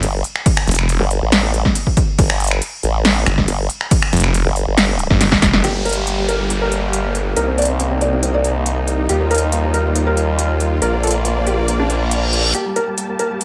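A snarling, growling distorted saw bass and a formant-sweep wobble bass dominate the opening drop of this chaotic, menacing heavy wobble dubstep excerpt, set in G minor at 139 BPM in a half-time feel, over a punchy, overdriven electronic kick and a big-room dance kit with crisp hats, crash cymbal, finger snaps and snare. After a drum fill and band accent around 5.5 seconds, the kick and saw bass drop out, and a soft, felt-muted upright piano with audible action noise and tape echo carries the melody over huge, lush supersaw chords that pump and sweep through a filter across Gm, Cm7, Ebadd9 and Bb. A downlifter, reverse cymbal and riser mark the transitions, with the riser closing the excerpt from 12.5 seconds in a light reverb.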